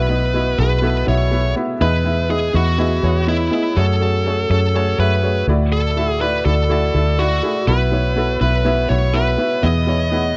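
Warm and anthemic, this piano-driven pop excerpt moves at a straight 123 BPM in 4/4, cycling through Bsus4, Emaj7, F#madd9 and Dadd9. A soft, mellow felt-muted upright piano carries the accompaniment while a dark, round, punchy foam-muted electric bass anchors the low end. A bluesy, distorted picked lead guitar sings the melody up front, all captured in a dry, close 1970s-style studio sound with small room ambience.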